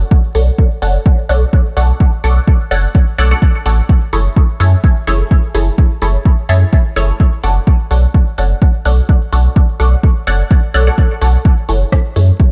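A steady 4/4 pulse at 127 BPM with a light 16th-note swing drives this nocturnal, cavernous dub techno excerpt, built on a punchy, up-front electronic kick and a quieter deep house kit of dark hi-hats and rim clicks. Beneath it, a smooth, clean sine sub bass sits forward in the mix with sidechain pumping, while muted, detuned chord stabs with a plucky filter carry phaser, cassette-tape colouring, sidechain pumping and dub echo. The harmony moves between Bm9 and F#m9 in a dry space dusted with vinyl crackle.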